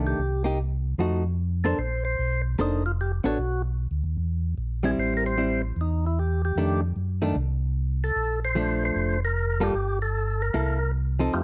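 A percussive tonewheel organ carries the melody up front, its full, clean voice marked by second-harmonic percussion and key click, turning through a slow rotary speaker. This is a swinging, soulful jazz excerpt at 151 BPM in 4/4, with the eighth notes swung. A second, mellow tonewheel organ handles the bass line from F1 to Gb2, round and dark, lightly overdriven, with chorus vibrato and its own slow rotary speaker. A hollow-body jazz guitar comps throughout, electric, picked and compressed, its tone dusky and clean. The harmony moves from Cm7 and F7b9 to Bbmaj9, then through Bm, C7, Am7 and F6 before settling on Bbmaj7, Gsus2 and C6 by 10.5 seconds. Light reverb gives the close, up-front trio a small sense of space across the roughly 11-second section.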